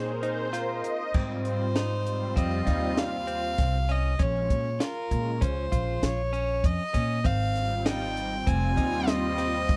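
Moving in a straight 5/4 at 98 BPM, this brooding, intricate progressive instrumental, cut from a longer piece, opens with a lush, detuned sawtooth pad shimmering with chorus and phaser together with a clean, compressed, direct-recorded electric guitar playing arpeggios and a woody, up-front pizzicato upright bass. A compact cocktail kit with dark cymbals, a high-tuned snare and punchy kick joins a moment later, while from 1.5 seconds a pure, floating sul tasto violin carries the melody over chords moving through Bb5, Ab6 and Bbm7, all captured in a dry, close 1970s-style studio sound.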